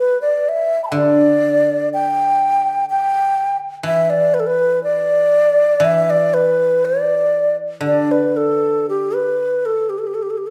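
Rubato and unhurried around 60 BPM in 4/4, this festive yet graceful 10.5-second fragment of Chinese traditional chamber music sets a breathy, bright bamboo xiao up front carrying the melody with vibrato and a crisp attack, over a softer guzheng accompaniment played with fingerpicks whose silvery, ringing low notes bloom in a wet recital-hall reverb.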